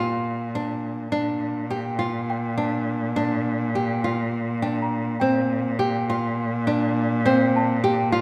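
A fingerpicked nylon-string guitar and a single bowed cello open this short excerpt together, the guitar playing classical arpeggios up front while the cello holds a low Bb beneath it with rich vibrato, soft attacks and expressive portamento. The piece is contemporary chamber music in Bb major, tuned to A4 = 444 Hz, moving at 206 BPM in eighths through a straight but uneven 7/8 meter that gives it a hopeful yet restless mood. At 1.7 seconds a worn celesta enters in the background, adding a delicate, bell-like texture high above, its sweet tone struck by hard felt hammers and sounding slightly out of tune. The harmony stays anchored on Bb, shifting from F over Bb to a Bb chord and back toward F over Bb around 5.2 seconds. A moderate concert hall reverb with a 2.2-second decay surrounds the trio.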